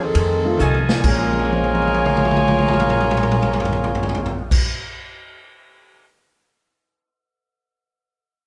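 A close, up-front saxophone section carries the melody in this sultry, brassy big band swing fragment in Bb minor at 135 BPM, its tone touched with light vibrato, while a clear trumpet section adds soft-attacked stabs from 0.6 seconds. Underneath, a woody, thumpy pizzicato upright bass and a punchy, roomy drum kit drive the swing, with drum fills from 0.6 seconds and again from 1.2 seconds, the kit carrying on alone until 6.0 seconds. A concert grand piano with deep bass sits in the background beside a very quiet, clean hollow-body archtop guitar, moving from F7#9 to Bbm7 in a moderate studio reverb heard from further back in the room, with lossy compression artefacts.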